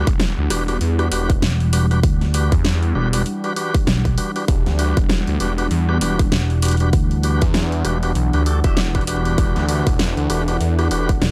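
Playful and swaggering, this glitch hop excerpt struts at 98 BPM in 4/4 with a 59% swing on the sixteenths, sitting in E minor on a single Em9 chord throughout. A punchy, up-front electronic kick and a dubstep kit with hi-hat, rim click and a huge snare drive the groove, both re-recorded in a small room. Underneath, a swirling, thick phased saw bass built from detuned unison sawtooth layers holds the low end, joined from 1.4 to 7.4 seconds by a dark, round fingered electric bass pushed through tube saturation, which returns briefly at 11.2 seconds. A lightly overdriven tonewheel organ with key click and fast rotary speaker fires stabs through tape echo, while a smooth, mellow analog pad with a slow attack and long release sustains chords under chorus and 12-bit sampler grit, both pumping with sidechain compression. The mix is dry and gritty, with a hardware edge and little room ambience.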